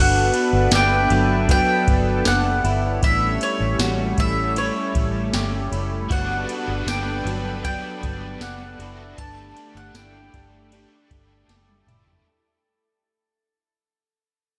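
This dreamy, ethereal slice of dream pop opens at once on a picked bowl-back mandolin melody, its doubled strings ringing through tape echo and a short slapback, over a lush, detuned pad of sustained chords shimmering with chorus. A slightly broken-up electric guitar plays compressed arpeggios through analog chorus and tape echo, while a dark, round, foam-muted fingered bass sits up front. A soft vintage rhythm box, with a deep kick, crisp snare, ride, tambourine and toms, sets an unhurried 78 BPM in straight 4/4, sounding tape-warm and re-recorded in a large room. Behind it all drifts a calm, glassy texture of sine overtones. At 6.1 s a bright, overdriven, double-tracked guitar enters quietly in the background with tremolo and ensemble chorus. The harmony moves from Gmaj7 through A7 to Gsus2 in G lydian, the whole passage fading throughout inside a long hall reverb that gives it a big arena sound, and a drum fill arrives at 11.5 s as the fragment of a longer piece is cut off.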